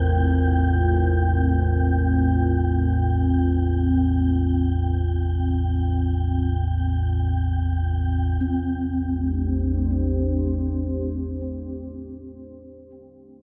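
A deep, ominous drone rumbles up front from the start, its nasal, ring-modulated tone sitting between A1 and E2 and blooming with a slow attack and long release in its own reverb. Beside it, a moody, full-bodied pad of detuned sawtooth voices with a sub octave holds sustained chords, thickened by chorus and reverb. The chords move from Gm/A to Am7. In the background, a bronze gamelan-type metallophone struck with padded mallets plays soft arpeggios whose paired tuning gives shimmering beats, and the tape echo trails them; it drops out after 2.4 seconds and returns at 8.4 seconds. A breathy, wind-like tuned noise texture hovers high above on G5 until 8.4 seconds. This unsettling, desolate dark ambient piece drifts in free time in A Phrygian, cut from a longer work, and the echo-heavy cassette mix places it all in a wet, echoing chamber.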